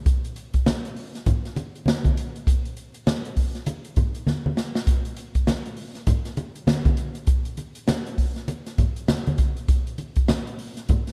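A strutting funk groove at 100 BPM in 4/4 swings its sixteenths, driven by an acoustic drum kit of hi-hat, punchy kick and medium-tuned snare that sits up front with an airy, polished hall character and breaks into a fill at 4.3 seconds. Low-tuned congas with a thick skin join at 0.7 seconds, close and warm beneath the kit. Light studio reverb colours this rough home-demo mix, cut from a longer piece, and lossy compression artefacts are audible.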